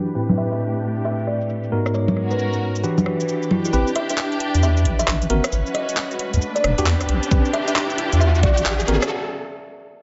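UK two-step garage with a bouncy, soulful swing, where filtered, delayed tine electric piano stabs, lush bowed strings pumping under the sidechain, a woody, hollow kalimba melody and a metallic-hatted garage kit with congas, cabasa, handclaps and rim clicks are joined at 3.7 s by a deep, detuned wobble bass, then an electronic riser from 5.7 s and a knocking kick at 7.3 s drive a build-up into a brief break, all under light reverb and a softened top end.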